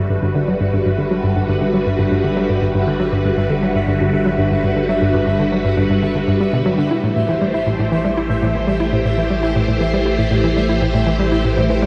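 Cosmic and luminous, this short cut of sequencer-driven ambient space music moves at 119 BPM in 4/4, in G major, shifting from Gmaj7 to Am7 at 6.9 s. A bright, up-front phased string machine holds swirling vintage sawtooth chords with ensemble chorus and shimmer reverb, while a hollow, bouncy square-wave pluck plays a detuned riff with chorus and delay. Beneath them a deep, round sine sub bass fades in across the full 11.9 s, and a pulsing, tempo-synced triangle texture sits high on E5, all bathed in a huge ambient reverb and the warbly pitch drift of worn cassette tape.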